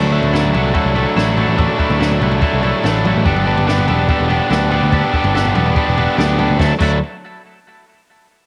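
This short cut from a longer indie rock piece opens with the whole band at once: a crunchy overdriven guitar riff sitting up front, a clean, twangy twelve-string electric guitar riff tucked in the background, an overdriven picked bass and a compact cocktail drum kit. The mood is upbeat and carefree, at 144 BPM in a straight 4/4 in D mixolydian. The harmony moves from Dadd9 to Gadd9 at 3.3 seconds and returns to Dadd9 at 6.6 seconds, where a new section begins. The crunchy guitar is bright and picked, while the compressed twelve-string shimmers with subtle chorus and tape echo. The bass is round and punchy, and the dry, natural-sounding acoustic kit pairs a high-tuned snare and dark cymbals with kick, toms and crash before it stops at 6.9 seconds. It has the feel of a home recording on cassette with light studio reverb, and the guitars and drums carry a cassette tape grain.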